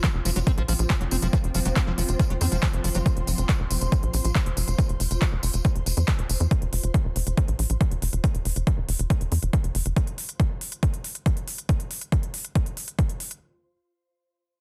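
A punchy, overdriven electronic kick drum sits up front and drives this psychedelic trance excerpt at 139 BPM in a straight 4/4, its layered sound re-recorded in a large room. A big-room dance drum kit of handclaps and crisp hi-hats runs alongside it for the full 13.4 seconds, while a jingly acoustic tambourine shimmers until 6.5 seconds. In the opening three seconds, a squelchy, resonant acid bass with chorus and dub echo sits in the background beside a swarming, detuned drone that holds tense sustained chords, both pumping under sidechain compression. A tight, nasal sequencer bass with a fast filter pluck carries the low end up front from 0.1 to 9.9 seconds, and above it an ethereal, airy pad with ensemble chorus and phaser floats in the background before it fades out by 10.0 seconds. The mood is driving and alien, set in a dense, heavily limited modern master with little reverb on the whole.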